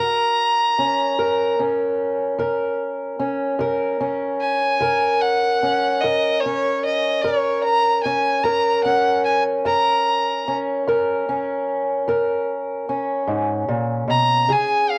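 A rich, smooth fiddle with light vibrato carries the melody up front, bowed by a single player in a high register, while a boxy, parlour-style fingerpicked steel-string acoustic guitar plays the accompaniment close beside it. This laid-back, gritty acoustic country blues moves slowly at 50 BPM in a straight 12/8, resting on F# major throughout this 15-second extract. The cassette-tape home recording gives both instruments a worn texture, set in a small room with light reverb.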